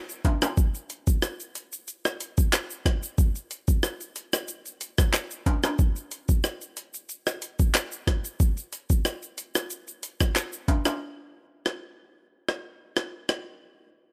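This dry, close-sounding cut from a longer dancehall track puts the drums up front, with a tough, bouncy mood at 92 BPM in a straight 4/4. A jungle sampler-style drum kit carries the groove from 0.1 seconds, its pitched-up, compressed samples of handclaps, hi-hat, rim click, shaker and a thumpy kick coming through gritty and overdriven. Beneath it, egg shaker and timbales add a bright, acoustic layer, played with soft hands and given a compressed, saturated edge, though they sit well back in the balance. At 11.0 seconds the percussion drops out as the music moves into a new section, leaving the sampled kit to drive on alone until 13.5 seconds.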